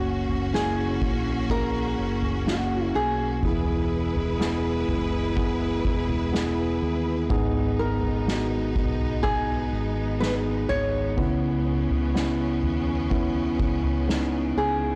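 A tender, hopeful pop ballad at 62 BPM in a straight 4/4: a bright, full-bodied, thumb-plucked nylon-string guitar carries the melody through tape echo over a clean, up-front tine electric piano, lush bowed strings with vibrato, a dark, round fretless bass and a distant, roomy soft-mallet drum kit with a punchy kick that enters at 0.3 s, as the chords move F#, E, G#m and C#m7 in a blown-out, overdriven recording with light studio reverb.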